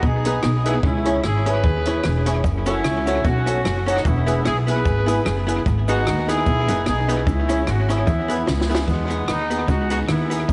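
A swung 149 BPM ska groove in 4/4 and E major bounces along cheerfully, driven by a dry compact cocktail kit with a punchy kick, high-tuned snare, hi-hat and rim click, its tape echo shared by the clean electric guitar's low picked riff and the hollow-body archtop's compressed, clean accompaniment. Up front sit a growly, woody pizzicato upright bass and a present horn section carrying the melody with light vibrato. A dark, mellow upright piano adds short stabs with audible action noise in the background until 8.8 s, and a grainy cabasa enters very quietly at 2.5 s. A drum fill at 8.5 s leads into an Emaj7 chord and a new section, all set in moderate echo-chamber reverb in this cut from a longer piece.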